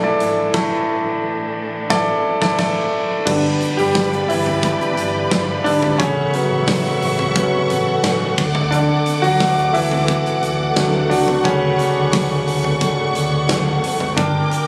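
A straight 4/4 pulse at 88 BPM carries this hopeful, anthemic piano-driven pop excerpt in D major, tuned to A4 = 444 Hz and cut from a longer piece. A present, up-front concert grand plays accompaniment throughout, its intimate tone showing audible action noise, deep bass and long sustain, and from 3.3 seconds it steps forward as a solo over the chords moving from G through A6 to D. A lush studio string section holds sustained, bowed chords with vibrato and a smooth top, while a dark, foam-muted fingered electric bass adds a round, punchy low end. The big-room acoustic drum kit, with its punchy kick, medium-tuned snare, crash, hi-hat and toms, enters at 0.2 seconds and joins the band in accents from 0.5 to 3.3 seconds over the opening Asus4. Light reverb and small room ambience, along with club reverb and compression, give the phone-captured recording a live-in-the-room feel.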